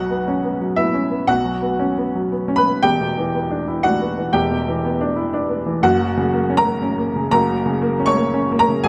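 Closely miked and touched with light reverb, a worn, woody, slightly detuned upright piano plays solo in this reflective, wistful fragment of a longer neoclassical minimalist piece, moving in rubato 3/4 at around 119 BPM through Bsus2, Em7 and F# across a span from E1 to C#6, its tone clear and open with a short sustain, sitting up front.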